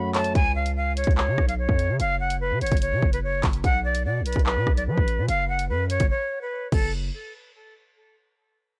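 Dark, menacing drill hip hop at 146 BPM in a half-time 4/4 feel, this short cut from a longer piece sits in F# harmonic minor, tuned slightly flat to A4 = 436 Hz. An expressive jazz flute carries the melody from 0.0 seconds, its airy, metallic tone softened by vibrato, a gentle attack and an analog delay. The electronic drill kit sits up front with a hard-clipped kick, warm hi-hats, handclaps, rim clicks and crash cymbal. From 0.4 seconds a heavy, aggressive 808-style bass enters, its sine tone roughened by distortion, transformer saturation and a noise layer, with a fast attack and a decaying tail ranging from F#1 to F#3. The harmony moves through C#, F#5, B5 and F#sus4 before the chords drop away at 6.9 seconds, with brief breaks at the very start and near the end. The whole thing has a dry, gritty hardware sound with a cassette-tape character and little reverb.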